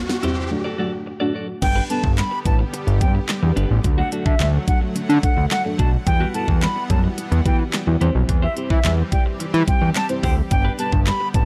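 A fat, saturated analog bass sits up front in this summery, euphoric dance-pop excerpt in G major at 108 BPM, its detuned sawtooth and square-wave tone pumping against the kick with a filter sweep. The opening build-up pairs a short electronic riser and a drum fill with deep, mellow chord stabs, whose soft, dark filter-plucked decay is colored by chorus and phaser, and a clean, compressed electric guitar riff that carries on through the whole section. At 1.6 seconds the drop arrives: the layered electronic drum kit drives with a knocking kick, fat snare, crisp hi-hats, handclaps and crash, while a reedy, airy concert flute takes the tongued, straight-toned melody with delay and sidechain pumping. Behind it, a lush unison pad swells in slowly with bright, thick sustained chords, kept in the background. The harmony moves from G through D, Emadd9 and C before returning to G at 10.5 seconds, all within a dark, close production that carries little reverb.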